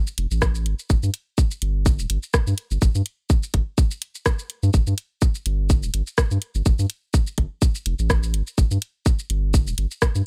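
A garage drum kit opens this cool, sparse minimal techno excerpt at 0.1 s, its hi-hat, rim click and shaker carrying a tape-warm, layered character and a 55% swing on the 16ths. A saturated sub bass enters almost at once, moving between D1 and G2 with a deep, thick, triangle-like tone, a fast attack and long sustain, pumping against a sidechain. An electronic kick drum arrives at 0.4 s, tight and up front alongside the bass. The groove holds steady at 125 BPM in 4/4 throughout, with the kit sitting further back beneath the kick and bass. The mix is dry, with little reverb.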